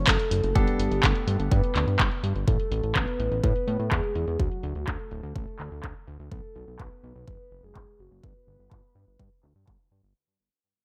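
Nostalgic and danceable, this brief italo disco fragment, cut from a longer piece, rides a straight 4/4 pulse from a punchy, tape-warm electronic kick and a layered house kit whose bright, overdriven hats and handclaps sit up front, with a filter sweep running across the drums as the whole passage fades out. A fat, detuned sawtooth bass with a plucky filter holds down the low end while a soft, round octave-layered synth lead with chorus, phaser, tape echo and vibrato carries the melody over chords moving from Bsus2 through Gadd9, Asus2, D, B5 and G. A clear concert grand piano adds short stabs between 0.6 and 1.7 s in an otherwise dry mix.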